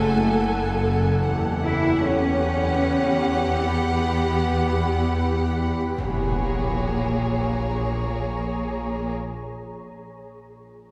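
In free time, this tense, mysterious cinematic fragment layers a lush, bowed cello section and clear double bass section over a nasal, sawtooth-edged drone, while a focused chamber violin section carries a second line and a shimmering, detuned ambient pad with chorus holds sustained chords above, drifting from Gbmadd9 to Emadd9 before an electronic impact lands at 6.0 s on Bbm7, all set back in a wet scoring-stage reverb.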